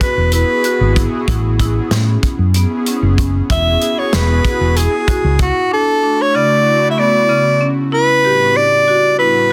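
Progressive instrumental band music in 7/8 at 190 BPM counted in eighths, this bright, intricate passage is cut from a longer piece and moves from Eadd9 and Amaj7 toward Dmaj7 and Em7/A. A breathy, whispered soprano saxophone carries the melody up front with a soft attack, light vibrato and an intimate pop-style tone. Beneath it, a marimba struck with hard mallets plays percussive arpeggios in a boxy small room, while an airy, nasal pad with a slow attack, detuned sawtooth layers and chorus sustains the harmony softly. A natural, acoustic drum kit with a punchy kick and medium-tuned snare sits up front alongside a dark, round hollow-body electric bass. Both drop out at 5.5 seconds, leaving the saxophone, marimba and pad to finish the second section, all set in light reverb and a dense, heavily limited modern master.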